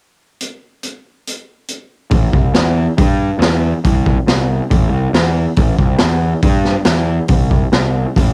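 Garage rock with a swaggering, gritty mood, this short excerpt opens on a raw drum kit of hi-hat, boomy kick and high-tuned snare, up front and saturated with a cassette-tape grit and a rolled-off top that sounds like a small room. At 2.1 seconds a picked electric bass joins, dark, round and punchy, its fuzz and overdrive pushing it up front beside the drums through to the end at 8.3 seconds. The home cassette recording keeps the sound dry and close.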